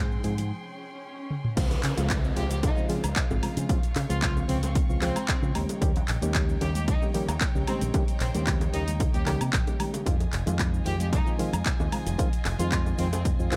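This groovy, sunny nu-disco excerpt opens with a reedy, clean electric piano carrying dub echo, a rich bowed violin section holding sustained chords in the background with sidechain pumping, a very quiet, dark pluck tracing arpeggios, and a bright, fingered electric bass pushed through an envelope filter. A moment later, cabasa, congas and bongos sit vintage and band-limited beneath a house drum kit of tape-warm hats, handclaps, shaker, toms, woodblock and crash cymbal. A swell and downlifter sound from the background at 0.7 seconds. A short break and drum fill lead into the drop at 1.6 seconds, where a punchy, up-front electronic kick arrives with studio reverb. From 2.4 seconds a second violin section takes the melody, its tone biting and earthy with light vibrato and tape echo, as the harmony moves through Dbmaj7, Eb7 and Fm7 in a dry, close-sounding mix.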